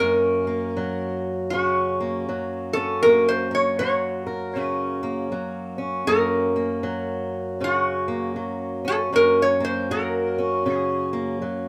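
A moderate studio reverb frames this short cut from a longer acoustic country blues duo, set at 79 BPM in 4/4 with swung eighths and a rollicking, soulful mood. Up front, a metal-body resonator guitar played with fingerpicks and a slide carries the melody in a metallic, nasal voice. A boxy, fingerpicked swing-style acoustic guitar accompanies on an F# chord, ringing on briefly after the slide guitar stops at 11.1 seconds.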